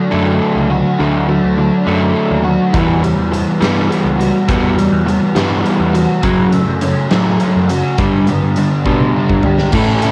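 Restless and cool, this indie rock excerpt moves in a straight 6/8 feel, cut from a longer piece and captured as a home recording on cassette with light reverb and small room ambience. Two overdriven guitars play riffs from the first moment: a semi-hollow guitar, picked and sitting up front with a hollow-bodied glow, and a second electric guitar, compressed and warm, dressed in ensemble chorus and tape echo. A growling picked electric bass, bright and overdriven, joins at 0.1 seconds. A big acoustic rock drum kit arrives at 2.7 seconds, with a punchy kick, medium-tuned snare, hi-hat, crash cymbal and toms ringing in a bright stone room and carrying a cassette tape grit of their own. The harmony travels from D through Emadd9 and F#m to G, and a drum fill from 8.9 to 9.7 seconds closes the section.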